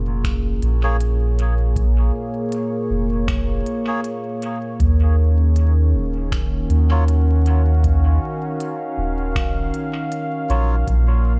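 Ambient dub with a hazy, spacious mood, moving at an unhurried pace with a gentle swing in this short excerpt cut from a longer piece. A soft, round sub bass sits up front, its deep tone thickened by tube saturation, while a warbling, detuned analog pad holds sustained chords with a smooth chorus sheen, drifting from Bbm7 to Ebm9 before settling on Bbm at 10.9 seconds. An electronic kick with a tape-warm, analog thump stays in the background, joined by an overdriven electronic kit of finger snaps and crisp hi-hats treated with studio reverb and dub echo. From 0.8 seconds a reedy, breathy melodica plays stabs, its nasal, close-miked tone sent into dub echo. The mix is echo-heavy with little reverb overall, and a layer of vinyl crackle adds a worn, vintage patina.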